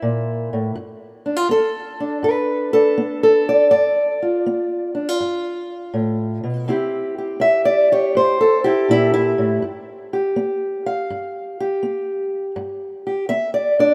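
Gritty and swaggering, this short excerpt of acoustic country blues moves at 81 BPM in 4/4, with a swung eighth-note feel and a G mixolydian colour. A single fingerpicked steel-string acoustic guitar carries the whole excerpt from start to finish, ranging from G2 up to F5. Its parlour-style tone is dark and boxy, with the woody character of old strings, and it sits up front in the mix. The harmony opens on C7, shifts to G7 at 0.8 seconds, returns to C7 at 6.7 seconds and settles back on G7 at 9.6 seconds. A lush hall reverb surrounds the guitar, and the rough home-demo sound adds to its raw, unpolished charm.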